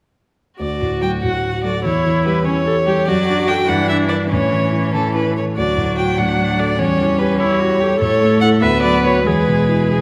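Set in a wet concert hall with a long 2.1-second reverb, this spirited classical-period movement for piano quartet moves along at 97 BPM in a lively 6/8 in D major, cut from a longer piece. A single bowed violin carries the melody up front with smooth vibrato, while the viola adds rich, even accompaniment and the up-front grand piano gives a warm, vintage sound with long sustain. The bowed cello enters at 1.0 s with a second line of its own, its tone also steady and sung with vibrato, as the harmony moves from D through A7/E and Em7/G before ending on E at 9.3 s.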